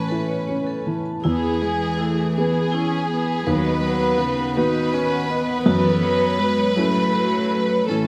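A moderate scoring-stage reverb of about 1.6 seconds puts a soft halo around the close, intimate players in this short neoclassical cut from a longer piece. The tempo is a slow, rubato 54 beats per minute in 6/8, in E major, and the mood is hopeful and tender. A chamber violin section carries the melody up front with a smooth, sul tasto tone and light vibrato, while a single cello sings a pure, floating second line beneath it. A dark upright piano with a woody, short-sustain voice and one airy-bowed viola fill in the accompaniment. In the background, a vibraphone played with hard mallets adds bright, metallic arpeggios with fast motor vibrato and a slapback echo from 0.1 seconds, over harmony moving from Aadd9 to E, then to B/D# and F#m7.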